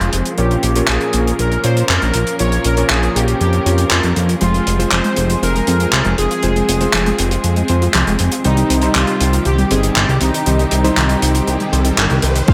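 Italo disco at 119 BPM in a straight 4/4 with a nostalgic, danceable mood, cut from a longer piece, where bold, brassy analog synth brass with chorus and delay carries the melody over background string chords and clangy electric grand piano stabs, a fat, detuned analog bass sits up front with tube saturation, a damped 70s kit brings handclaps, hi-hat and dark crash cymbals through gated reverb, a very quiet analog pluck adds arpeggios from 4.4 s, a faint riser builds from 11.0 s, and a punchy electronic kick lands at 12.5 s, all moving through Bbm, Fm and Cm.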